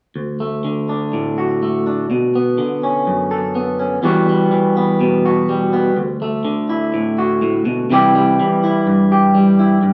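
A dark production soaked in wet, large studio reverb frames this heartfelt, intimate folk fragment, where a single up-front electric guitar through a small old amp sounds bright, twangy and slightly broken-up as its picked accompaniment moves from D through Bmadd9, Emadd9 and Dadd9 to C between 0.2 and 9.9 seconds.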